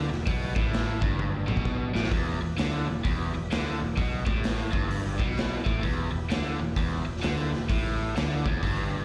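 Blues rock and southern rock from a power trio, this smoky, gritty swung fragment is cut from a longer piece and sounds like a live club gig heard through the venue's PA, with light reverb. An overdriven, double-tracked electric guitar plays a riff up front with slapback echo over a round, foam-muted fingered bass and a raw garage drum kit with a punchy kick and saturated room sound, which throws in a fill at 1.2 seconds. Far back in the mix, a bright tonewheel organ holds sustained chords through a rotary speaker with chorus vibrato.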